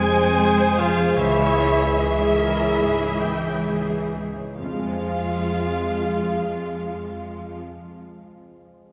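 In a rubato 4/4 that drifts between 65 and 78 BPM and slows over the first 4.6 seconds, this cinematic film-score fragment in F harmonic minor carries a bittersweet, longing mood. A lush studio violin section sings the melody with vibrato and expressive portamento, set at a distance, while a mellow solo cor anglais, a pure, hollow flute ensemble and a very quiet, focused symphonic violin section weave second lines around it. Underneath, violas with their own portamento, a barely audible French horn section holding sustained chords, and smooth, even bowed cellos and double basses form a velvety foundation. A felt-muted upright piano, dark and intimate with audible action noise, accompanies from the background as the harmony moves from Fm to Dbm at 1.2 seconds and back to Fm at 4.6 seconds. The orchestra falls away at 7.6 seconds, and the piano rings on alone until 8.9 seconds. A cavernous church reverb bathes the whole passage.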